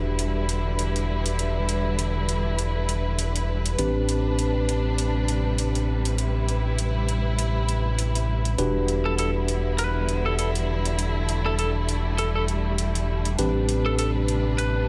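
A gritty, saturated synth bass with a nasal sawtooth bite sits up front in this funky, swaggering glitch hop excerpt, holding low notes under Em7 and Am11 chords while a lush, bowed string section sustains harmony and an electronic hi-hat with metallic, tape-toned shimmer keeps a swung 16th-note feel. A clean tine electric piano plays stabs roughened by 12-bit sampler grit and dub echo, with a filter sweep running through the whole passage, and a barely audible electronic impact marks the opening 1.4 seconds. At 9.1 seconds a dark, slightly broken-up lead guitar enters with a picked, compressed melody, carrying the same lo-fi grit and echo in a fairly dry mix.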